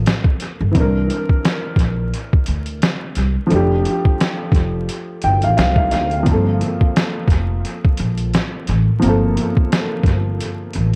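Vinyl crackle and an echo-heavy mix set a hazy, nostalgic tone in this short lo-fi hip hop excerpt, heard in light reverb with studio ambience. A dark upright piano carries the accompaniment through Gm11, C9 and F69 before returning to Gm11 at 6.3 seconds. Its mellow, worn tone is slightly detuned and boxy, with short sustain, audible action noise and a dub echo trailing its chords. Beneath it, a pizzicato upright bass on steel strings sounds woody and up front, holding the low register throughout. The sampler-style drum kit, pitched down, compressed and muffled, pairs a thumpy kick with a medium-tuned snare and hi-hat, re-recorded in a large room and carrying its own dub echo. The lightly swung groove keeps the reflective, intimate mood steady across the 11 seconds.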